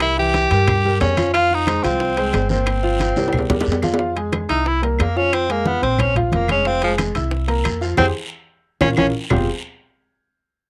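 Afro-Cuban jazz at a brisk 181 BPM in F minor, sultry and sophisticated, in which a bright, up-front tenor saxophone with vibrato, scooped notes and a cassette-tape tinge takes a solo from 4.0 s over an intimate concert grand piano with audible action noise and deep bass, a thumpy pizzicato upright bass on gut strings, ringing metal-shell timbales, soft-handed congas in the background, very quiet low-tuned bongos, woody claves and a raspy guiro that drops out between 4.0 and 6.7 s, with drum fills and a band accent from 8.0 s in this cut from a longer piece, heard under light reverb on a home cassette recording.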